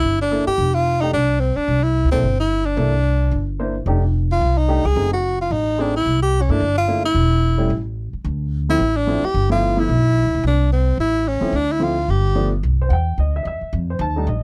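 A brisk, swinging 4/4 groove with a gentle eighth-note lilt drives this playful small-group jazz clip, cut from a longer piece, with pizzicato upright bass, woody and dark with steel strings, sitting up front from the start. A breathy tenor saxophone carries the solo melody close-miked, with scooped notes, until 12.5 seconds. Beneath it a polished, present upright piano comps quietly from 0.3 seconds through rich extended chords, all captured dry and detailed.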